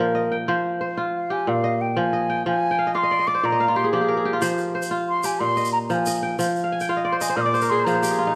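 West African traditional music in a hypnotic, flowing 12/8, cut from a longer piece, where an up-front, crisp kora fingerpicks ringing arpeggios with fills from 2.7 s and 6.6 s beneath a close-miked, airy wooden flute melody with vibrato and tongued notes, joined at 4.4 s by a grainy, distant tube shaker, in a moderate recital hall reverb.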